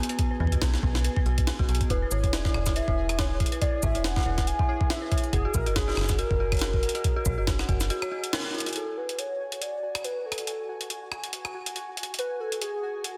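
A warbling, nostalgic lead with chorus, vibrato and tape echo carries the melody from 1.9 seconds in this playful, wistful IDM excerpt at 140 BPM, swung on the 16ths and moving from B5 through E to F#add9. Underneath, an eerie, inharmonic FM bell plays arpeggios through chorus and digital delay, and a dark, metallic FM bass with tube saturation sits alongside a thumpy, pitched-up electronic kick. A gritty jungle sampler kit of cabasa, hi-hat, rim click and medium-tuned snare plays in a small room, while a bright, pulsing gated texture glows with reverb behind. After a break and a band accent at 8.3 seconds, the bell, bass and kick have all dropped away by 8.8 seconds, leaving the lead, drums and texture over a dense, heavily limited master.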